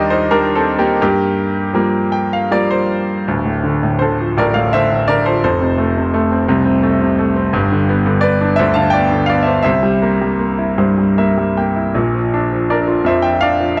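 A bright concert grand piano plays alone in a lyrical, bittersweet classical passage, moving in a rubato 3/4 at roughly 77-88 BPM, opening in G minor over Ebmaj7 and Gm7 before shifting to D minor at 3.3 s. The brilliant, up-front piano reaches from deep bass up to A5, adding fills at 1.8 s and 10.4 s as the moody harmony travels through Dm7, F, G7 and C7 to settle on Bb. A wet small-room reverb and the soft grain of cassette tape frame this short excerpt cut from a longer piece.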